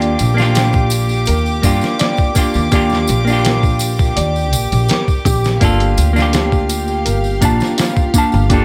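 A straight 4/4 groove at 83 BPM drives this dark, brooding trip hop fragment, built on a gritty, pitched-down sampler-style drum kit with a thumpy kick, a pizzicato upright bass that sits woody and up front with tube saturation, and a close, dry tambourine. A clean, scooped semi-hollow electric guitar carries the accompaniment with harmonic tremolo and tape echo, while a violin section holds soft, floating sustained chords and a muted, mellow felt-muted upright piano plays delayed arpeggios in the background. The harmony moves from Ebmaj7 to Gm7 at 5.6 seconds, all set in a light small-room ambience over 8.6 seconds.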